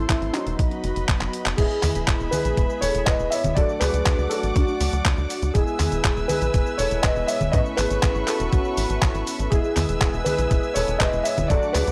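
Italo disco at 121 BPM in E major, playful and sunny, this short cut sets a dark, boxy grand piano melody with tape echo over veiled, muted strings holding chords, fat detuned synth brass stabs with chorus, a tight, nasal sequencer bass, and a thumpy electronic kick with a 12-bit drum machine of cabasa, congas, handclaps, hi-hat and crash that enters at 0.1 s and fills from 1.2 s before the tune settles on an E, D, E and Aadd9 progression, all captured in a dry, gritty cassette sound.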